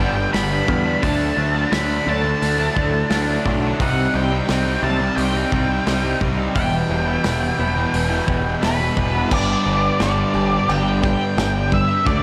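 Shoegaze and dream pop rock in G major at 87 BPM, this hazy, wistful piece moves from G through Dadd9, Cm and Em before returning to G, all bathed in a lush hall reverb. An octave-fuzz lead guitar carries the melody through tape echo over a shimmering, octave-doubled twelve-string acoustic that picks very quiet arpeggios. Background riffs come from a biting overdriven guitar with reverse reverb, a thick fuzz guitar with chorus, and a bright double-tracked distorted guitar that drops out at 9.3 seconds, while a growling bass with overdrive sits up front and a loose indie kit with punchy kick and dark cymbals enters at 0.3 seconds.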